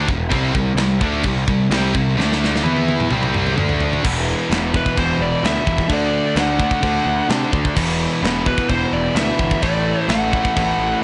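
A dark, high-gain lead guitar carries the melody from 4.8 seconds over a dark, epic heavy metal riff in E minor at 129 BPM in a straight 4/4. Beneath it, a tight, bright distorted guitar sits up front, while a scooped high-gain guitar plays the riff only until 4.0 seconds and a fuzzy, double-tracked guitar fills the background. A growly, overdriven electric bass with a fuzz edge anchors the low end. The acoustic drum kit is tight and mid-forward, with bright china and crash cymbals, a medium-tuned snare, a tight kick and toms, plus a fill from 2.2 to 4.0 seconds. The harmony moves through C5, D5 and E5 power chords before reaching A5, and the blown-out, overdriven recording carries light reverb and a dull top end in this cut from a longer piece.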